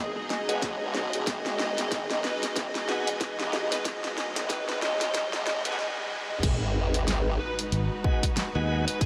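A lush studio string section holding sustained chords opens this playful, swaggering glitch hop excerpt at 93 BPM, joined at once by a dark, overdriven lead guitar sitting in the background with tape echo and a wobbling, formant-sweep bass colored by chorus and overdrive. A warbly, lo-fi pad with a nostalgic, vintage character drifts in faintly beneath, while a tonewheel organ adds very quiet, clean stabs through a fast rotary speaker. The swung 16th-note feel comes from a punchy electronic kick and an up-front pop kit with a fat snare, hi-hat, rim clicks, toms and crash, whose fills drive a build-up in G# minor as a background riser climbs toward the drop at 6.4 seconds. There an impact and sub drop hit, the strings pump against the sidechain, and at 7.7 seconds a bright, growly fingered electric bass steps forward to take over the low end. The whole mix is soaked in a huge, dreamy ambient reverb that lends it a hazy, floating depth.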